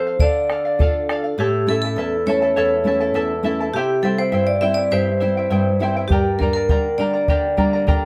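Wistful yet festive, this short excerpt of Andean folk at 102 BPM in 2/4 sets a bright, ringing vibraphone struck with hard mallets and given a medium motor vibrato over a shimmering, fingerpicked charango with double strings and an up-front classical nylon-string guitar, while a round bombo sounds from 0.2 to 1.2 seconds and returns at 6.1 seconds as the chords move from Dm through A and C to Gm in a moderate studio ambience.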